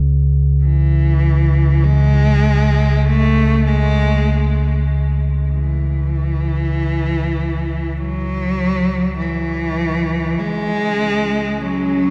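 Dark ambient drone, ominous and desolate, in which a deep rumbling synth drone with lush chorus sits up front, an expressive bowed cello with vibrato, portamento and delay enters at 0.6 s, a filter sweep arrives on the drone at 10.4 s, and a moody detuned pad and a very quiet flickering, grainy texture join near the close of this short cut from a longer piece, set in a vast, echoing cathedral space.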